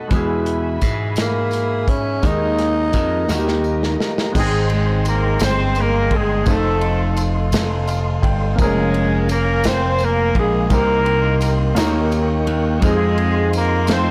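A bright, punchy slap bass sits up front with transformer saturation, anchoring this jubilant, soulful slow gospel piece in 6/8 at 57 BPM in Ab major, heard here as a cut from a longer performance. A warm grand piano sits in the background as accompaniment, while a soft, flute-like tonewheel organ holds sustained chords through a slow rotary speaker. A dark, veiled string section, muted and bowed, adds background chords until 4.3 seconds. An acoustic studio drum kit with bright cymbals and a punchy kick drives the groove, with soft clipping on the snare and a drum fill leading into the second section, and a jingly tambourine rings distantly in a large room. A raspy, breathy tenor saxophone enters at 1.2 seconds with a gritty, growling solo line full of scooped notes, and at 4.4 seconds a smooth, loose jazz-style horn section takes over the melody in octaves with vibrato, while the piano adds a fill as the harmony moves through rich seventh chords. 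The sound is dry and blown-out, with heavy overdrive across the recording.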